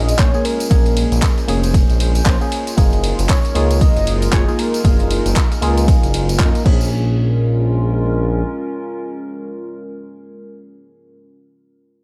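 Moody and hypnotic, this deep house excerpt rides a swung groove built on a punchy, up-front electronic kick, a layered kit of handclaps, hi-hat, ride and crash cymbal, and a jingly tambourine in the background, with the drums dropping away at around 6.8 s. A smooth, nasal sawtooth bass with sidechain pumping holds the low end until 8.4 s, while a velvety, detuned synth lead with chorus, tremolo and tape echo sings a short melody over Bbm7 and Gbmaj13 before ending at 5.4 s. A deep, phased analog pad and hollow, wave-folded organ stabs carry on to the close, completing a dark production with light reverb.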